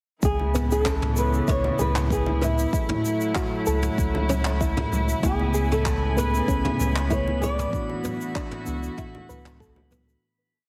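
Relaxed and wistful, this sunset chillout piece at 96 BPM in C# phrygian sets a dark, thumb-plucked flamenco guitar melody with digital delay over a reedy bowed string pad, a round sine sub bass, a deep electronic kick, a light brushed lounge beat with shaker, low tom and clap, ringing congas in the background and a soft nasal pluck arpeggio looping in six steps against the bar, joined at 5.2 seconds by mellow tine electric piano chords with syncopated pushes and then by a glassy held high note, all under heavy radio-style compression before a fade-out from 6.9 seconds.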